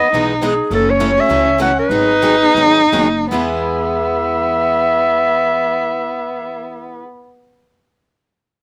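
Swinging and lively, this short cut from a longer acoustic string swing piece in E major moves at 147-210 BPM with a swung 4/4 feel, easing down between 0.7 and 3.3 seconds as the chords pass from Emaj7 through F#m7 and G#m7 to E. A raspy, growling clarinet with light vibrato and slapback echo carries the melody up front, while a bowed violin with vibrato and portamento sings an expressive, smooth-topped second line beneath it. Two bright, picked steel-string guitars with fresh strings and finger squeak accompany in the background, one of them boxy, over a woody, thumpy pizzicato upright bass on gut strings, in a dry outdoor setting.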